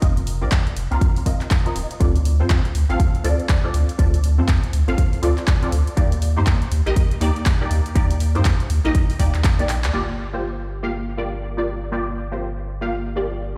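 A round analog bass sits up front in this hypnotic deep house excerpt, its dark, nasal tone sustaining with a fast attack and a sidechain pump. A layered electronic kick drives the swung groove from the front of the mix, while a dry, overdriven analog drum machine adds handclaps and hi-hat further back. Filtered dub chord stabs float above, muted and mellow, with detuned sawtooth and square tones, a sub octave, and short plucked decays colored by phaser, ensemble chorus, dub echo and sidechain pumping as they move through F7sus4, Dm7 and Ebmaj7. A drum fill at 9.7 s and a band accent lead into a new section at 9.9 s, where the drums fall away and the bass and stabs settle on Gm7. The whole track sounds as if it is played on a big sound system in a bare stone room, with light reverb.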